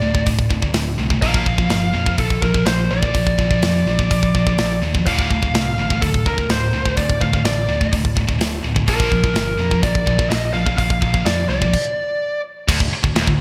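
The recording has a bright 1980s-style digital studio sound with light reverb. This is a dark, aggressive heavy metal piece, cut from a longer work, in D minor at 126 BPM in a straight 4/4. Two high-gain distorted guitars sit in the background, playing picked riffs over D5, Bb and D minor chords alongside a growly, punchy overdriven electric bass. Up front, a tight acoustic drum kit with gated reverb drives the music with kick, medium-tuned snare, hi-hat and crash cymbal. Above it all, a dark, high-gain lead guitar carries the melody until 12.4 seconds. The band hits a stop from 11.7 to 12.7 seconds before landing back on D5.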